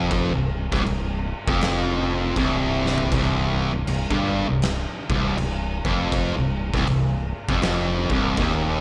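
The recording carries light reverb, with the guitar and drums pushed up front. This brooding, ominous stretch of stoner and doom metal moves at 80 BPM in 4/4 with a swung eighth-note feel, set in C minor. A bright, double-tracked fuzz guitar plays the picked, compressed riff, while a growling fingered electric bass, overdriven through tube saturation, sits beneath it with a warm, amped tone. An oversized, low-tuned acoustic drum kit fills a big, pumping room with dark cymbals, a fat snare, a boomy kick and toms, its sound gritty and saturated. A short drum fill arrives at 2.7 seconds, and the passage, cut from a longer piece, runs to 8.8 seconds.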